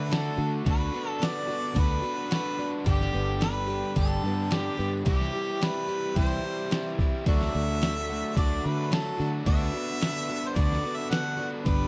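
Lightly reverberant digital ambience frames this hopeful, open-road folk rock and heartland rock excerpt at 109 BPM, where a distant, roomy harmonica with light vibrato carries the melody over a shimmering, octave-doubled plugged-in twelve-string acoustic guitar, a bright, double-tracked overdriven stack guitar riff, a round, foam-muted fingered electric bass and a gritty, up-front sampler-style drum kit with a thumpy kick, as the chords move through D, Bm/D, G and C.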